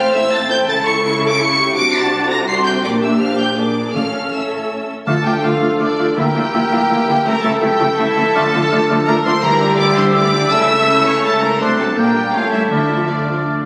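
Veiled, con sordino strings open this dramatic, restless excerpt from a quick classical-period orchestral movement in triple time, with the violins carrying a lush melody over a second violin line, viola accompaniment, and cello and double bass below, while distant French horns hold dark sustained chords and calf-headed timpani on medium mallets sound intermittently, until at 5.1 s an airy flute, a light-vibrato oboe and a smooth clarinet add background lines and a trumpet section enters with stabs, all set in a wet scoring-stage reverb captured on a phone in the room.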